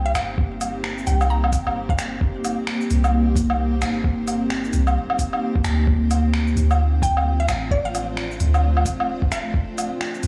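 Melancholic and wistful, this future garage excerpt at 131 BPM in C dorian swings its 16ths over a blurred, evolving granular pad and a deep, round 808-style bass that pump against a muffled, thumpy pitched-down kick, while an overdriven organic kit of finger snaps, smooth hats, shaker and woodblock ticks along, a woody, chorused mallet pluck with analog delay floats in from 0.1 to 2.5 seconds and again from 7.0 seconds, and the chords shift from Cm7 to Dm7 at 5.9 seconds inside a gritty, vinyl-crackled recording bathed in a wet recital-hall reverb.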